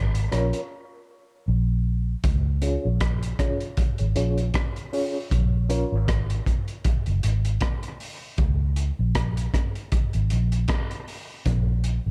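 A round, foam-muted electric bass sits up front in this laid-back, spacious dub reggae excerpt, its dark, amped tone holding the low end throughout at 78 BPM in 4/4 with a light swing on the sixteenths, tuned to A4 = 445 Hz. A crunchy breakbeat kit of hi-hat, kick drum and rim click backs it, saturated and gritty with a punchy kick and a rolled-off top. A reedy electric piano plays stabs from 0.3 to 5.9 s, sounding worn and slightly out of tune through its built-in speakers, coloured by fast tremolo, a low-pass filter and dub echo. A break comes early and runs to 2.2 s. The harmony rests on B-flat minor, shifts to a D-flat power chord later on, and then falls away to open, unharmonised bars near the close, all set in a small room ambience.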